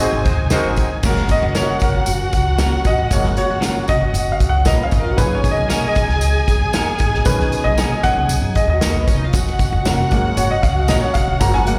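A brief band accent opens this danceable 1960s-style soul excerpt, with a very quiet, tight vintage horn section that stops at 0.9 s, before a present, short-sustained baby grand piano takes a solo from 1.0 s over lush bowed studio strings with tape and slapback echo, a fat, lightly overdriven tonewheel organ holding chords in the background, a woody pizzicato upright bass, a natural drum kit with a punchy kick, a jingly close tambourine, and slightly broken-up, lo-fi electric guitar stabs, all heard as a live gig through the venue's PA with recital hall reverb.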